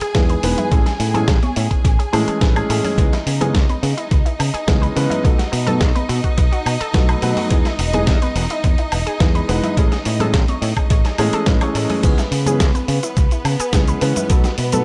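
A thumpy, up-front electronic kick anchors this sleek, groovy nu-disco excerpt at 106 BPM in C# minor, alongside a gritty sampler-style kit with snare, hi-hat, shaker, woodblock and crash in tape echo, very quiet ringing congas, a growly fingered electric bass with tube saturation, a dark, mellow grand piano and lush, distant bowed strings that both pump against the kick, and a nasal, chorused analog pluck arpeggio with delay tucked in the background, all cycling through Emaj7, Amaj7, C#m7 and B7 in an echo-heavy mix.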